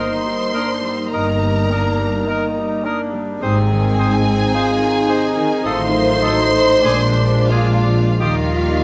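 A lush, lyrical passage from a slow romantic symphonic movement in Eb major opens with most of the ensemble at once. The expressive violin section sings the melody high with vibrato and a soft attack while an airy flute section, a bright oboe, a clear clarinet and a hushed, intimate second violin section weave gentle second lines above the bassoon, the rich viola section, the smooth, tight French horn chords and the very quiet ringing arpeggios of the concert harp. At 1.1 s a dark double bass section with portamento and an even-toned cello section join on the bass. The tender, rubato pulse hovers around 42-54 BPM as the harmony moves through Ab, Adim7 and Bb7 back to Eb, captured closely and in fine detail with light reverb.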